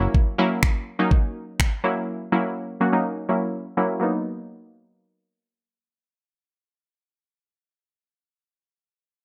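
Light reverb gives this short, summery dance-pop fragment a sense of air, with both parts sitting up front. A glassy wavetable pluck carries the accompaniment from the start to 7.5 seconds, its digital, crystalline tone shaped by a fast attack, a decaying tail, a noise layer, chorus, sidechain pumping and a low-pass filter. During the first half, a filter sweep makes the pluck's bright timbre evolve as the harmony holds on F#7, before moving to Bmaj7 at 4.0 seconds. A smooth, electronic R&B drum kit appears only briefly, from 0.1 to 1.7 seconds, pairing finger snaps with a knocking kick that was re-recorded in a small room. The mood is euphoric and straight-ahead, the feel of a produced dance track caught partway through.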